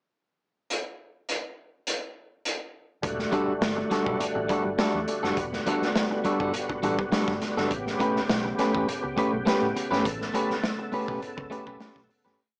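This short funk piece has a lo-fi cassette sound, heard through a small speaker in a modest small room, with a sly, cool mood at 103 BPM in E dorian. A raw garage drum kit opens alone at 0.7 seconds with a pickup bar, its punchy kick, medium-tuned snare and hi-hat sounding saturated and up front in a pumping room, playing a syncopated funk groove with ghost notes. At 3.0 seconds the breakdown begins as a foam-muted vintage fingered bass joins with a dark, round syncopated riff anchored on the downbeat, alongside an overdriven tonewheel organ holding thick sustained chords through a slow rotary speaker and chorus vibrato. An electric guitar at the edge of break-up enters just after, its twangy, compressed sixteenth-note rhythm part sitting up front with muted scratches. The harmony moves from a rootless Em11 to A9 at 7.7 seconds, and the piece fades out from 10.1 seconds to its close.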